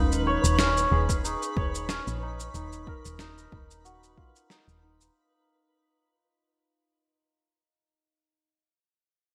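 A mellow, shimmering santur stands up front throughout this short fragment of organic downtempo, its hammered arpeggios ringing through a low-pass filter and digital delay while a filter sweep moves across it, and it carries on alone after the other parts drop away, until about 8.4 seconds. Beneath it, a round, woody FM bass sits close with a fast attack and sidechain pumping, holding the low end over an Abm7/Eb chord before stopping at 5.1 seconds. A gritty, sampler-style shaker and medium-tuned snare with gated reverb set a gently swung pulse. An overdriven, layered electronic kick lands between 1.1 and 4.3 seconds. Far in the background, a twinkling granular texture adds sparkling, slow-blooming shimmer with its own reverb and subtle chorus. The mood is earthy and meditative, wrapped in a lush hall reverb and bright 1980s-style digital production, with a fade-out across the opening 5.2 seconds.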